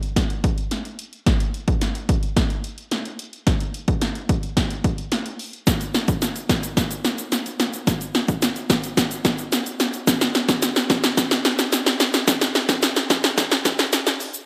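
A punchy analog drum machine leads this short pop excerpt, its kick, snare and hi-hat sitting up front with a tape-warm, electronic character and the open sound of a large room. The tempo is 109 BPM in a straight 4/4, and the mood feels confident yet bittersweet. An egg shaker joins at 5.7 seconds, grainy and bright in its small room, sitting in the background behind the drums. The whole passage is a build-up, carried by a drum fill and a filter sweep that run from start to finish. Light reverb and a high-pass filter give it the rough, unpolished feel of a home demo.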